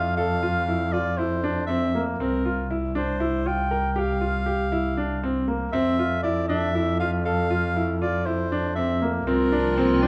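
Contemporary instrumental chamber music in 7/8 at 238 BPM counted in eighths, this short cut from a longer piece feels hopeful yet restless, set in C mixolydian with a straight feel. A mellow soprano saxophone carries the melody up front in a smooth, classical-style solo, while a bright, brilliant grand piano spins natural-sounding arpeggios beneath it. A single bowed double bass anchors the low end with a clear, focused tone and vibrato, and the harmony moves between open Fmaj7(no3) and Csus4 colours before settling on C7sus4 at 9.3 seconds. At that moment a mellow clarinet adds a brief classical-style second line, and a barely audible, bell-like celesta offers a delicate, sweet touch. From 9.5 seconds an icy glass pad enters with airy, crystalline sustained chords, shimmering through chorus and its own reverb, and the whole ensemble sits in a wet recital hall.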